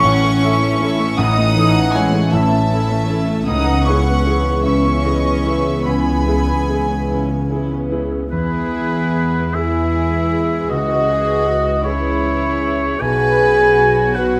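Violins playing sul tasto lead this moving, uplifting film-score passage, singing the melody in a pure, floating tone while a second violin line sits beneath them and a hollow, airy flute group adds a crisp line above until 7.1 seconds. Set in E major and a slow, rubato 6/8 of around 48-53 BPM in dotted quarters, the orchestra is cushioned by a dark, intimate viola section with gentle vibrato, a rich cello section and distant double basses, all bowed with soft attacks. In the background a mellow French horn section holds tight sustained chords, a vintage-toned grand piano accompanies smoothly, and a concert harp rings out fingerpicked arpeggios. At 8.3 seconds the music moves into a new section and a solo oboe comes up front, its light vibrato and classical phrasing lending a warm second voice. The harmony drifts from A through C#m7 to E and C#m before resting on Bsus2, and the whole ensemble sits in a moderate recital-hall reverb that gives this cinematic excerpt an emotional glow.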